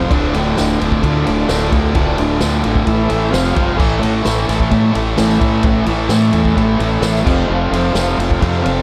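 A menacing, swaggering garage rock excerpt in D minor at 130 BPM opens with a distorted, double-tracked fuzz guitar riff up front, a growling fingered electric bass with overdrive, and a reedy combo organ holding sustained chords with heavy vibrato in the background, joined at 0.1 s by a vintage drum kit with a punchy kick, dark cymbals and a rolled-off top, all set in light reverb as the harmony moves from Dm through A5, F5 and A to F.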